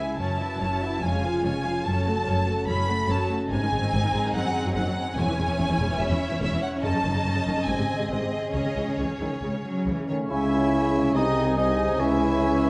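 A lush, reverberant scoring-stage sound wraps this short, restless excerpt from a fast, dramatic romantic orchestral movement in C# minor at 144 BPM. Two violin sections carry the focus, one singing the melody high with rich vibrato while the other traces a second line beneath, supported by smooth, even violas and a ringing concert harp playing arpeggios in the background. Cellos and a distant double bass section anchor the bass, and the harmony moves through a restless minor progression that settles on C#m. At 10.1 seconds a mellow French horn section adds sustained chords and a punchy, roomy trumpet section cuts in with stabs. From 10.3 seconds the woodwinds join: a clear solo oboe and an airy flute section add second lines, a very quiet clarinet adds another, and a bassoon fills in the accompaniment, thickening the texture for the closing bars.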